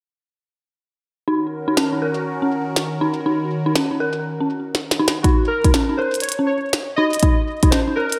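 Glitchy and intricate, this IDM excerpt moves at 121 BPM in 4/4 with a swung sixteenth-note feel, set in Eb dorian. A dark, detuned synth bell opens at 1.3 seconds with eerie, inharmonic FM arpeggios, full-bodied and mellow under chorus, delay and a low-pass filter, and at 1.4 seconds a swirling, sawtooth phased analog pad joins, holding sustained chords on Ebm7 with a slow attack and long release. A glitchy drum kit of tiny snare and clicky hats, tape-toned and up front, joins at 1.8 seconds, and a drum fill leads into the second part at 5.2 seconds, where the harmony shifts to Eb5. There the pad drops out, a deep electronic kick enters, and warbling lo-fi synth keys carry a nostalgic, wave-folded melody through chorus and digital delay. The whole sits in light reverb with a digital ambience.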